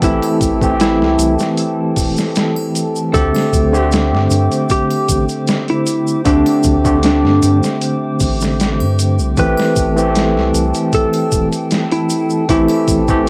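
This dark, hypnotic trip hop passage, cut from a longer piece, has the hazy, lo-fi character of a home recording on cassette, with light reverb around it. A clean, twangy lap steel guitar carries the melody with slide, its notes softened by cassette tape saturation and tape echo. Beneath it, a bell-like tine electric piano sits up front with harmonic tremolo and its own tape echo, while a warbling, detuned pad holds sustained chords in the background through chorus and built-in reverb. A round, deep analog bass anchors the low end, and a gritty, pitched-down boom bap drum kit with a thumpy kick and high-tuned snare is pushed through overdrive. Tube shaker and triangle add close, acoustic detail as the harmony moves from Am7 to D7sus4 at 3.1 seconds and back to Am7 at 9.4 seconds.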